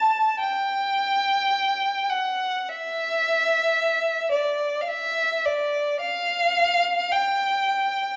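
A lone bowed violin opens the recording, its rich, smooth tone carrying vibrato through a mournful, meditative line. This is a classical piece for unaccompanied violin, played by one player with a free, expressive rubato feel over a 4/4 metre. The melody sits in a narrow upper band from D5 to A5 and holds an even character across its 8.2 seconds. The instrument is placed up front yet sounds slightly distant, framed by a moderate recital hall reverb. A worn, old cassette-tape quality adds a warbling pitch drift that lends the sound a faded cast. The passage is cut from a longer piece.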